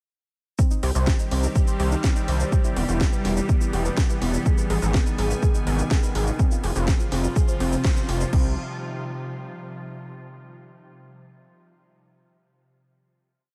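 A punchy, overdriven four-on-the-floor kick, a house kit of cracking snare, bright hats, shaker and crash, and a woody wave-folded pluck arpeggio whose six-step loop drifts against the bar through analog delay drive this hypnotic melodic techno piece from 0.6 seconds. They are joined by a gritty, saturated off-beat synth bass, an evolving, detuned wavetable pad with ensemble chorus, and a very quiet, resonant drone of moving overtones, with the kit, bass, pluck and pad pumping to the kick until a band accent at 7.8 seconds and a final chord from 8.3 seconds.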